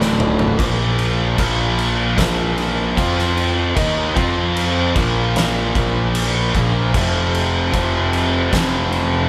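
A brief cut of a live band in one room with light reverb opens this brooding, sludgy stoner and doom metal passage at a slow 76 BPM in straight 4/4, beginning with a drum fill in the first 0.6 seconds. An oversized, low-tuned acoustic kit sits up front in a bright stone room with a pumping, gritty, saturated sound, punchy kick, fat snare, toms and dark crash cymbals. A double-tracked, compressed fuzz guitar drives the riff through D5, Bb5, F5 and Eb5 power chords, over a growly, overdriven fingered bass with a warm, fuzzy low end.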